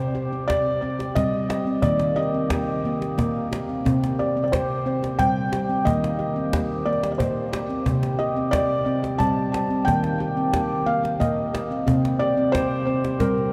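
A bright, ringing stainless-steel handpan sits up front in this hypnotic, meditative world piece, sounding its arpeggios from the first moment with sharp finger strokes and a full, close tone. Above it, a felt-muted upright piano carries the melody in a soft, mellow, intimate voice, colored by tape echo. A woody cajon with faint snares joins at 0.5 s, struck by hard hands lower in the mix. The music moves at 90 BPM in a straight 3/4, in C dorian tuned to A4 = 439 Hz, and its harmony alternates between C5 and Eb chords throughout. A cathedral reverb with a 6.8-second decay soaks the whole mix in a dreamy haze, and the passage is cut from a longer piece at 13.5 s.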